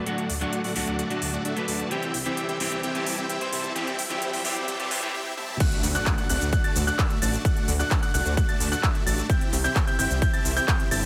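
Uplifting and triumphant, this festival progressive house cut at 130 BPM opens with a build-up in which a huge, thick supersaw riff moves through a filter sweep over a saturated, chorused detuned saw bass, crisp overdriven big-room drums and a slightly broken-up, picked electric guitar treated with spring reverb and delay. A very quiet riser and impact sit faintly beneath, the guitar drops out at 5.1 seconds, and a drum fill leads into the drop at 5.6 seconds. There, a punchy, up-front overdriven kick and high, warm grand piano arpeggios join the pumping supersaw and bass, which alternate between D and C chords.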